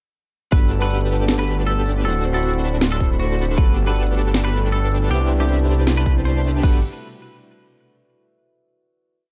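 The piece opens at 0.5 s straight into a bright, euphoric future bass drop in G major at 157 BPM, felt in half-time with a light 16th-note swing. A punchy, layered electronic kick sits up front, landing sparingly across the drop, while a trap kit adds a sharp snare, crisp closed hats with rolls, and crash cymbal. Underneath, a thick, detuned saw bass with chorus follows the chord rhythm, and a smooth supersaw riff throbs with sidechain pumping in held chords and syncopated pushes, its tone shifting with a moving notch. A twangy, picked clean electric guitar carries a repeating riff melody through analog chorus and delay, backed by a tine electric piano playing rootless chords in the background and a very quiet, ringing concert harp running an eight-step arpeggio. An airy, breathy pad with slow attack and long release fills in mellow sustained chords as the harmony moves from Gmaj9 through D7 and Cmaj9, settling on a final Gmaj9 chord at 6.6 s, all wrapped in dark, warm digital ambience.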